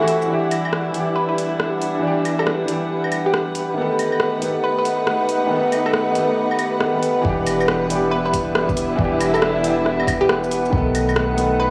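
Future garage at 138 BPM in E minor with a 64% swing on the sixteenths, wistful and nocturnal, where a felt-muted upright piano with audible action noise and a bowed string section with vibrato pump under sidechain over a glassy, drifting harmonics texture, a deep house kit of claves, metallic hats, rim click and shaker, and a hollow, nasal square pluck melody entering at 1.2 seconds with tape echo, before a round 808-style bass and a deep electronic kick arrive at 7.2 seconds as the Em7 to B7 progression repeats in a dry, gritty hardware sound with transformer saturation and a moderate recital hall reverb.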